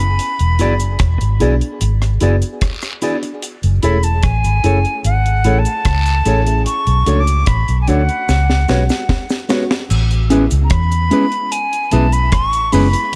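Bittersweet and longing, this lovers rock reggae excerpt sets a breathy, close-miked concert flute at the front with tape echo on its expressive, straight-toned melody, over a round, foam-muted fingered bass that sits prominently in the mix. A dark, clean electric guitar plays stabs while a dreamy FM electric piano with a soft pad layer adds chorus, phaser and dub echo from 0.6 seconds, and a dry drum kit with a high-tuned snare and tight kick is joined by cabasa and guiro in the background. A drum fill at 8.3 seconds leads into a new section at 9.9 seconds that opens on an Amaj9 chord, all within a small room reverb.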